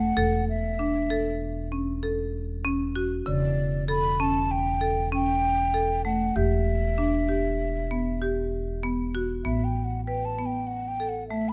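Restless and urgent, this short contemporary chamber piece moves at 97 BPM in an uneven 5/4 with a straight feel, cut from a longer work and lasting about 11.5 seconds. A breathy, hollow concert flute carries the melody with a straight tone and soft attack, while a marimba with medium hard mallets plays mid-forward, rosewood-toned arpeggios over a growly pizzicato upright bass on steel strings. All three sit up front in a close, detailed recording with light reverb, as the harmony moves from a rootless Dmaj7/E through A/E and Em before settling on Asus2 at 9.5 seconds.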